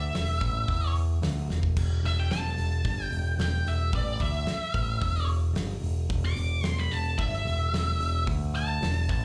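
Gritty and heavy, this short cut from a longer blues rock and southern rock power-trio performance, heard live through a club PA with small-room reverb, features a dark, fuzzed octave lead guitar soloing up front with wah, distortion and slapback echo, over a growling, overdriven picked bass and a big acoustic drum kit with a fat snare, punchy kick and bright cymbals that throws in a fill at 1.5 seconds before the harmony arrives on a D5 chord at 8.3 seconds.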